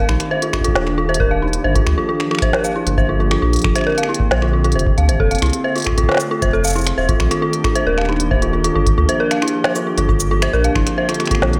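A steady, straight 4/4 pulse drives this short, wistful IDM cut from a longer piece, built on an organic-sounding electronic kit of finger snaps, smooth hi-hats, shaker and a woody snare, all touched with digital delay. A deep, tape-toned analog kick arrives at 0.5 seconds and anchors the groove beneath a round sine sub bass whose tube saturation gives it weight. Over this, a glassy, ethereal FM pad holds mellow sustained chords, softened by slow attacks, long releases, ensemble chorus and its own built-in reverb. Sitting up front, an eerie, detuned FM bell spins inharmonic arpeggios with fast, decaying notes, thickened by chorus and digital delay, giving the piece its glitchy edge. The harmony cycles through Ebmaj7, Gm7, Bb69 and F, all within a light digital ambience that keeps the mix airy and bittersweet.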